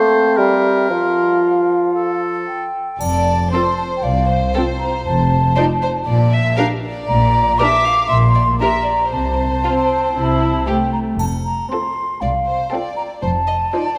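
This excerpt sits in a wet concert-hall reverb, with a faint mains hum underneath. It is a playful, whimsical film cue in F major at 117 BPM in a straight 4/4, with a mischievous, quirky mood. A clear oboe, a mellow clarinet and a dark, roomy bassoon open the cue, while a hollow, pure-toned silver flute sits up front as a high second line that runs to the end. At 3.0 s an intimate, close chamber string ensemble takes over, bowed sul tasto with light vibrato. A second violin line enters in the background while smooth-topped cellos join a double bass section on the bass, and at 3.5 s a soft-attack violin section picks up the melody as a dusky viola section fills the middle. A close, dry triangle adds brief touches, and the harmony moves through C7/G, F, rootless Gm/Bb and F/C before landing on F7.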